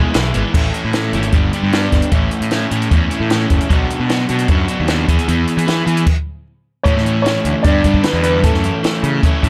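Wistful yet upbeat, this indie rock excerpt rides a double-tracked, compressed overdriven electric guitar riff over a fuzz-soaked picked electric bass and a dry, compact cocktail drum kit with a punchy kick, high-tuned snare and dark cymbals, the three sitting up front. As the stop from 6.1 to 6.9 seconds draws to a close, a woody, mellow upright piano, heard only briefly at the opening, returns with the melody through an analog delay. The production is dark and warm, with little reverb.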